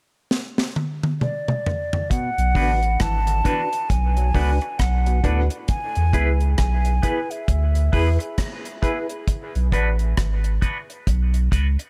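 Dub reggae at a meditative, spacious 67 BPM in B dorian, this excerpt opens with a dry, up-front drum kit fill of tight kick, high-tuned snare, rim clicks, hi-hat and toms before an airy, hollow flute carries the melody through dub echo, joined near 2.1 seconds by a stringy clav arpeggio with phaser in the background, a round sine sub bass up front, overdriven reedy electric piano stabs with fast tremolo, and a twangy, bright picked guitar with phaser, over Bm and E chords as a filter sweep runs from 5.7 seconds to the end in a small room.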